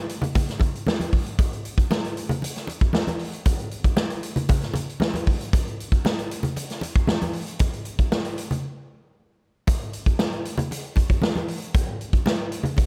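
A punchy, up-front acoustic drum kit with a medium-tuned snare, kick and hi-hat drives this sly funk excerpt at 116 BPM in a straight 4/4, its natural big-room sound carrying a swinging big-band character. Ringing congas struck with hard hands sit close and dry beneath it, entering at 0.2 seconds, while a light reverb colours the overall mix. A break at 8.6 seconds sets up a new section from 9.7 seconds that runs to the cut at 12.9 seconds.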